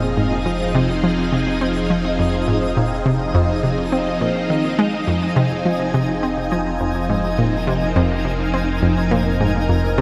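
Swirling, up-front string machine chords steeped in ensemble chorus and phaser hold a single Fm7 through this cosmic, mysterious ambient excerpt at 104 BPM in F minor, while a bright, detuned analog pluck riff with chorus and tape echo runs beneath, a deep, round analog bass sustains a low F, and a twinkling granular texture with an octave-up shimmer sparkles above, the whole set in a wet, lush hall.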